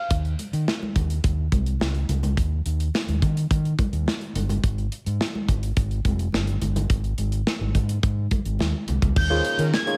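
A straight 4/4 groove from a punchy studio drum kit with gated reverb and an amped, overdriven fingered bass drives this smooth, feel-good early-eighties boogie funk at 106 BPM from 0.1 s, with ringing hard-hand congas alongside, until at 9.2 s a nasal, vibrato-laden synth lead with chorus and slapback echo returns over an Eb9sus4 chord, joined by a lush, very quiet string machine, a fat, warbling synth brass line in the background and a gritty electric piano through a combo amp, all set in small room ambience in this cut from a longer piece.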